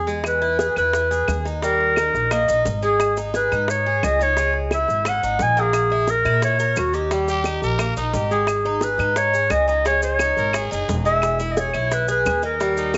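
Tight, high-tuned bongos, woody claves and grainy maracas in the background drive this danceable, sultry Cuban son and guajira passage at 175 BPM in G# minor, where a dark, thumpy pizzicato upright bass and a bright, metallic tres picking arpeggios on double strings support a roomy, classical-style clarinet melody up front, joined at 7.3 s by a raspy, growling trumpet second line, set in a small room with moderate echo-chamber reverb and a rolled-off top end.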